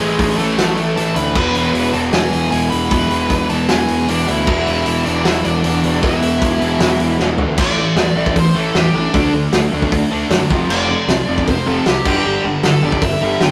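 This aggressive, raw punk rock excerpt opens with the whole band at once, a loose acoustic drum kit sitting up front with a punchy kick, a medium-tuned snare, hi-hat, toms and crash cymbal, its saturated, gritty sound rolled off at the top. Beneath it a growly fuzz bass, direct and amped, anchors the low end while three overdriven guitars play the riff: a biting, warm one and a bright cranked stack guitar in the background, plus a very quiet, double-tracked distorted guitar. A dark, nasal lead guitar with a parked wah carries the melody over the top. The opening passage runs in half time until a drum fill at 7.2 seconds leads the band into a second section at 7.6 seconds, where the lead guitar takes a solo over a power-chord progression. Light reverb and a rough rehearsal-room sound give the recording an unpolished, live edge.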